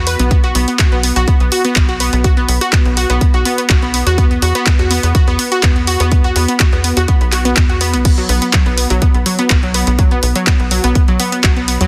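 Bittersweet and emotional, this short cut from a longer progressive house track moves at 124 BPM in a straight 4/4, resting on a B5 chord. A tight, driving sequencer bass built from sawtooth and square waves sits between B1 and E2, its fast-attack filter pluck decaying while a moving notch shapes the tone and sidechain pumping makes it breathe. Over it, an up-front analog pluck plays arpeggios from F#3 to B4, round and bright, with detuned saws, a noise layer and an evolving filter sweep, colored by chorus, cassette tape character, delay and its own sidechain pumping. A layered, produced house drum kit supplies crash cymbal, handclaps and hi-hat, while a punchy electronic kick enters at 0.3 seconds, sits prominently in front and drops out at 11.5 seconds. The sound is nearly dry, with a dense, heavily limited modern master.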